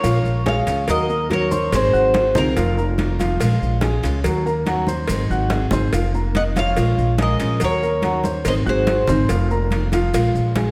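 Danceable and nostalgic, this short cut from a longer Cuban son and guajira piece moves in a straight four-beat groove over a repeating minor-key cycle of seventh chords that passes through a suspended dominant before returning home. The Cuban tres carries the melody with a metallic, bright bite from its double strings, some of them octave-doubled, while a softer, fingerpicked classical nylon-string guitar traces a second line beneath it in the background. Both drop out at 3.2 seconds and return at 6.4 seconds, leaving the rhythm section to hold the floor in between. A picked steel-string acoustic guitar with audible finger squeak keeps up the accompaniment, and an intimate grand piano rolls out arpeggios with its natural action noise audible. Up front, a woody, thumpy pizzicato upright bass anchors the low end with a dark tone, and the percussion sits in the background: ringing congas played with soft hands, a tight, high-tuned cowbell struck hard, and grainy, mellow maracas. 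A moderate scoring-stage reverb gives the ensemble a spacious, polished finish.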